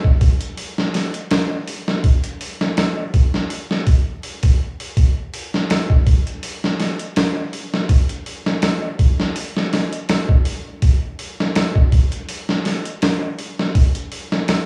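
A gritty, sampler-style boom bap drum kit opens this excerpt and carries its full 14.7 seconds alone, setting a brooding, smoky trip hop mood at 82 BPM in 4/4 with a slight 16th-note swing. The kit sits up front, compressed and pitched down, with a thumpy kick, a medium-tuned snare and hi-hat, and it carries the character of having been re-recorded in a large room. Vinyl crackle and small room ambience hang around the groove, lending the whole a dusty, lived-in air under a light reverb. The passage stays in a single section throughout, cut from a longer piece.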